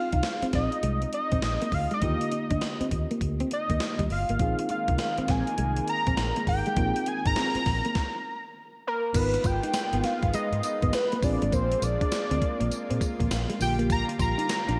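A bouncy 101 BPM new jack swing groove with a 64% swing on the sixteenths drives this flirty R&B excerpt, built on an up-front, gated 80s digital drum machine with a thumpy kick, gated-reverb snare, hi-hat, tambourine and crash, and a dark, foam-muted fingered electric bass that sounds round and punchy. A fat, detuned analog sawtooth lead with a sub octave, vibrato and chorus carries the melody up front, while a soft, mellow FM electric piano with tube saturation and a clean, compressed picked electric guitar riff sit in the background over Bb7sus4 and Ebmaj7 harmony. A lush, airy unison pad of detuned sawtooth and square waves joins at 4.4 s, and after a stop at 8.0 s the music moves through Abm6 and Bb7, all set in a moderate plate reverb with bright 1980s-style digital production.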